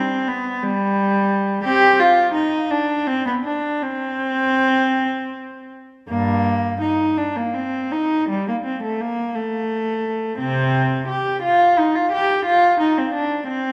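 A classical, baroque-style suite movement for unaccompanied cello, introspective and grave, moving in a slow, rubato 6/8. The lone bowed cello sits up front with a nasal, reedy gut-string tone in period style, ranging from its low register up through the middle. A wet reverb with a long tail surrounds the instrument, giving this brief excerpt, cut from a longer piece, a distant, spacious character.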